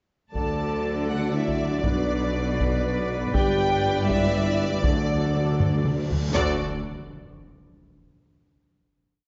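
A close, dry taiko ensemble pounds a heavy-stick big-drum ostinato through this short, triumphant and adventurous epic orchestral film cue in D major at 80 BPM in 6/8, beneath lush bowed violins holding tremolo chords on D5 while a second violin line doubles the tune at the octave, tremolo violas and clear woodwinds sustaining harmony, a dark, punchy French horn section, and a bass of sustained cellos doubled by soft-attack double basses and a distant, roomy tuba, as the chords move from D through Bm and G back to D; hard-mallet timpani enter at 4.9 s rolling into the climax, and a huge, bright reverse cymbal swells into a low impact at 6.4 s that carries the final chord to 7.9 s in a moderate scoring-stage reverb.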